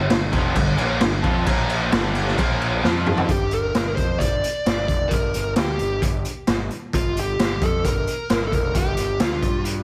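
Aggressive and menacing, this hard rock cut in G minor drives at 132 BPM in a straight 4/4. Two tight, bright distorted guitars open with a picked riff over Gm, Bb5, G5 and F5, one set back and the other very quiet, and both stop at 3.3 s. Beneath them, a fuzzy, punchy picked electric bass carries the low end with overdrive throughout. The raw garage drum kit sits up front with a boomy kick, a medium-tuned snare, hi-hat, toms and crash, its sound gritty, saturated and rolled-off on top, and a drum fill leads into the second section. From 3.3 s a dark, smooth overdriven lead guitar takes the melody up front, colored by a slapback echo. A lush hall reverb gives the whole a big arena sound, though the piece is cut from a longer work.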